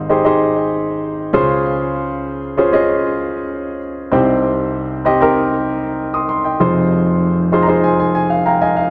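A grand piano opens this moody, dramatic pop passage on its own, playing solo for the full 8.9 seconds of a section cut from a longer piece. Set in F minor at 97 BPM in a straight 4/4, the piano moves through Abmaj7, Dbmaj7, Cm and Fm7, landing on the last of these at 6.6 seconds. Its tone is warm with a short sustain, placed up front in the mix, and a tape echo trails behind its notes. The playing spans from F1 up to Eb6, and a piano fill arrives at 7.2 seconds to carry the passage to its close. A moderate plate reverb with a 2.8-second decay surrounds the instrument, and the overall production leans dark.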